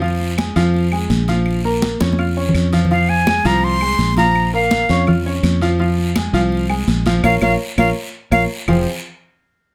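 A breathy, unsteady concert flute carries the melody up front in two short tongued phrases from 2.9 seconds and again at 7.2 seconds, where the band hits an accent, riding over a fiery, driving salsa fragment built on a clear, open grand piano, a dark, round fingered electric bass, damped high-tuned congas and woody claves close in the background, and a raspy guiro set back in a large room, all cycling between two minor chords in moderate studio reverb.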